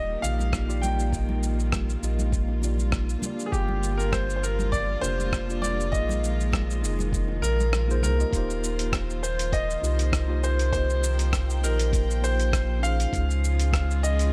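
Up front sits a deep, round sub bass beneath a clear grand piano melody with long sustain and delay, while a mellow tine electric piano and softly bowed, lightly vibrato chamber strings fill out sunny, warm sunset chillout harmony over a gritty, overdriven sampler-style kit of hi-hat, rim click and shaker, a thumpy background kick that drops out from 7.7 to 8.3 seconds, and bright hand percussion that stops at 8.2 seconds, all set in small room ambience.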